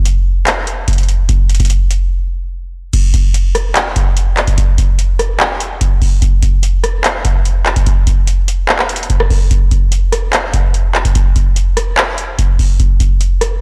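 Melancholic and dark, this hip hop fragment, cut from a longer piece, rides a half-time feel carried entirely by a booming analog drum machine that sits up front, its deep kick, metallic hi-hats, handclaps, rim clicks and crash cymbal carrying a tape-warm grain. A short break falls between 2.1 and 2.9 seconds before the beat settles into its second section, running on until 13.5 seconds. The whole recording sounds blown-out and overdriven, set in a digital ambience.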